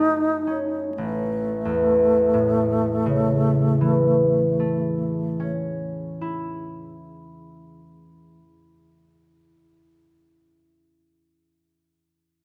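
Pastoral and dreamy, this brief impressionist duo for alto flute and concert harp drifts in A major at a slow 32 BPM in 4/4, its rubato feel letting time stretch freely. The wooden-headed alto flute carries the melody in a low register from A3 to D#4, its airy tone shaded with vibrato, a soft attack and lifted highs, and it sits up front with an expressive touch until it falls silent at 5.5 seconds. The harp provides a fingerpicked accompaniment spanning A1 to E4, its acoustic strings ringing with a warm glow and continuing alone to 9.9 seconds. The harmony opens on a rootless B9 before settling onto A at 1.0 seconds. A wet recital-hall reverb with a 1.7-second decay surrounds the pair, and the passage is cut from a longer piece.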